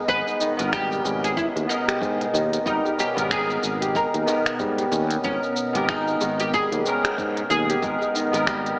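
Organic downtempo at 93 BPM in G# harmonic minor, this hypnotic excerpt sets a woody, plectrum-plucked oud melody entering at 0.1 seconds over mellow, ringing kora arpeggios and a barky, lightly overdriven tine electric piano with chorus, pumping and analog delay, while a growly fretless bass, a very quiet ethereal pad holding a G#madd9 chord, crisp hats, snaps and shaker, a gritty kick in the background and a tight, very quiet djembe from 0.6 seconds sit in a dreamy, reverb-soaked mix with an AM radio sound.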